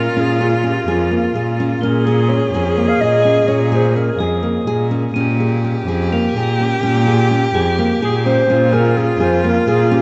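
Heard in a vast, echoing cathedral space with a long, wet reverb and a softened top end, this fragment of a longer contemporary chamber piece unfolds in an uneven 7/8 with a pensive, hypnotic mood over a single minor seventh chord. A dark, distant clarinet carries the melody in a classical solo style, falls silent at 4.9 seconds and returns at 8.0 seconds. Close and up front, a single viola plays a second line with a rich, biting, intense vibrato and airy bowing. A fingerpicked nylon-string guitar spins full-bodied arpeggios in a deep classical manner. The slightly louder bowed cello holds the bass sul tasto, intimate and soft in attack with light vibrato. In the background, crotales struck with hard rubber mallets add a mellow, shimmering, bell-like ring high above until 9.0 seconds.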